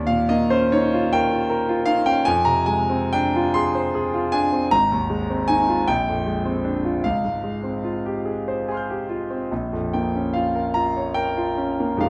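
Wistful and hazy, this brief excerpt from a longer impressionist solo piano piece drifts in a rubato 6/8, its harmonies gliding through colorful extended chords such as Eb9, Ab69 and Dbmaj7#11. A clear, natural-sounding concert grand sits up front, ranging from deep bass notes to the high register. Moderate recital hall reverb lends the 12.1 seconds of playing a gentle sense of space.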